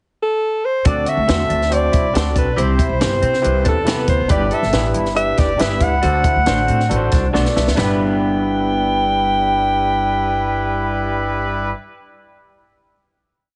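A breathy alto saxophone opens this joyful, uplifting 1960s-style soul piece with a scooped, motif-based melody, soon joined by a dry, punchy cocktail drum kit with a high-tuned snare, a woody pizzicato upright bass line with chromatic approach notes, a gritty overdriven tine electric piano playing close-voiced quarter-note chords with grace notes, a distant horn section of short stabs, and two slightly broken-up guitars through a small old amp with spring reverb, one twangy with backbeat chops and one dark and lo-fi with a repeated figure, before piano and drum fills lead into a final chord at 7.8 s, in a heavily compressed, radio-like mix.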